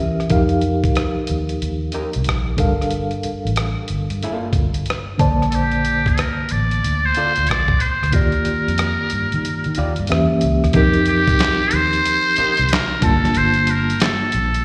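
Heard through a venue's PA with recital-hall reverb, this introspective, sultry neo-soul R&B excerpt at 92 BPM rides a swung 16th-note feel, with a reedy electric piano shimmering in fast tremolo, a round, foam-muted electric bass and a gritty, tape-warm sampler-style drum kit of handclaps, hi-hat, rim click, snare and thumpy kick, which drops out from 9.4 to 10.7 seconds, while a slightly broken-up, lo-fi guitar with slapback echo enters at 1.9 seconds and a buzzy, raspy metal-muted trumpet with vibrato and scooped notes takes the up-front jazz solo from 5.5 seconds over chords moving from F9sus4 through Gm9, Bbmaj7, Ebmaj9 and Edim7.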